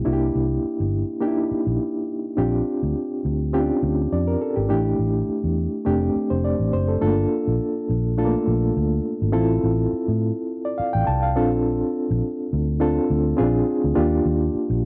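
Warm and lush, this short cut from a longer piece is 1970s-style soul with a gentle swing. A reedy electric piano, lightly overdriven and pulsing with medium tremolo through its built-in speakers, carries the chords up front, moving from C7 and A7sus4 into a second passage at 7.0 s that drifts through Gm7, Bbmaj7 and Bb7 before landing on Ebmaj7. Beside it a dark, round, foam-muted fingered electric bass sits punchy and close, and the whole home cassette recording has a dulled, hazy top end with a touch of light reverb.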